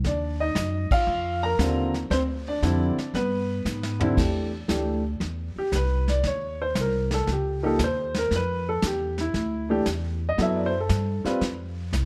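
Light reverb gives this relaxed, sophisticated jazz piano trio excerpt a gentle sense of space as it swings in 4/4 at 116 BPM in C major. The upright piano sits up front with a woody, natural tone, long sustain and plate reverb, while the pizzicato, steel-stringed upright bass, also up front, and a vintage drum kit played with brushes in a studio room, with its punchy kick and rolled-off top, support it. A band accent lands at 0.8 seconds, and a drum fill from 3.7 seconds leads into a piano solo from 4.2 seconds over chords such as Ebmaj7sus2, Dm7 and F#m7b5.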